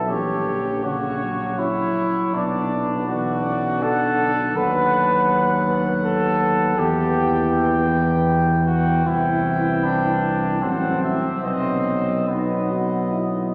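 Melancholic and yearning, this classical, hymn-like brass band passage in B minor moves in a rubato 3/4 at roughly 71-82 BPM, its harmony drifting from a diminished opening through minor and major chords before settling on B at 11.4 seconds. A dark trumpet section carries the melody from a distance while the warm flugelhorn sings a second line up front, and a mellow, smooth-topped tuba holds the bass. A clear, soft-attacked trombone and a euphonium with vibrato sit in the background as accompaniment, and a long cathedral reverb wraps the ensemble throughout this 13.5-second excerpt cut from a longer piece.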